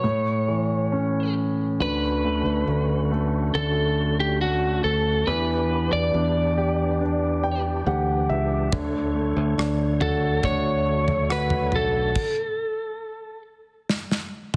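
A lightly driven lead guitar carries the melody of this longing, emotional pop ballad, its picked tone slightly broken-up and compressed and placed up front. A concert grand piano accompanies from the opening, intimate and present with audible action noise, deep bass and long sustain, and it adds a fill shortly before the drums arrive. At 1.8 seconds a growly fingered electric bass and a reedy tonewheel organ join, the organ sitting in the background with key click, chorus vibrato and a fast rotary speaker while the harmony moves through lush seventh chords. An acoustic drum kit enters at 8.7 seconds with a punchy kick, medium-tuned snare, rim clicks, toms and crashing cymbals, and after the band stops at 12.2 seconds it closes the excerpt with a fill. The mix is heavily compressed like a radio broadcast, with moderate plate reverb and a small room ambience, and the piece is cut from a longer work.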